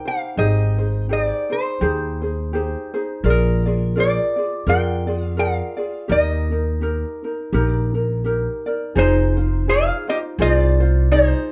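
A lilting swing on the eighth notes carries this sunny, dreamy Hawaiian passage at 84 BPM in 4/4, cut from a longer piece. Lap resonator guitar takes the melody from the start, its slide tone nasal and metallic yet mellow, picked with fingerpicks and sitting up front. Beside it, a ukulele plays a light, bright accompaniment plucked with the thumb, while a pizzicato upright bass with steel strings enters at 0.4 seconds, growly and thumpy with a woody body. The harmony moves through Abmaj7, Bb7 and Eb before shifting to Fm7 as a new section begins at 9.0 seconds. A small room lends a moderate reverb to the acoustic sound.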